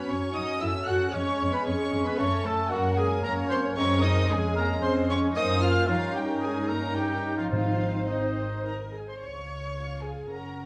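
A wet stone-room reverb frames this dark, urgent, dramatic excerpt of a quick classical-period orchestral movement in 3/4 and Db major at 113 BPM, played with rubato. Two violin sections carry the melody and a lush second line with sul tasto bowing. An oboe, a vintage-toned clarinet and an airy, very quiet flute group add further lines over a mellow bassoon and a viola section, while hushed French horns hold chords and the cello and up-front double bass sections anchor the bass. Timpani with hard mallets enter at 7.5 s, the winds and horns stop at 8.9 s, and the strings alone carry on to 10.7 s.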